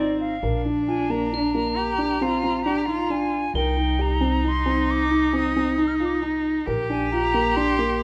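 Hopeful yet restless, this contemporary chamber excerpt moves in an uneven 7/4 over harmony that shifts from Bbadd9 to Cm and back. An airy silver concert flute with vibrato carries the melody, while an up-front, expressive bowed cello sings a second line with portamento alongside mellow, vintage felt-muted upright piano arpeggios and a woody, growly pizzicato upright bass. Soft, shimmering crotales ring in the background from 1.3 to 4.6 seconds, and the ensemble is captured with close, detailed microphones and light reverb.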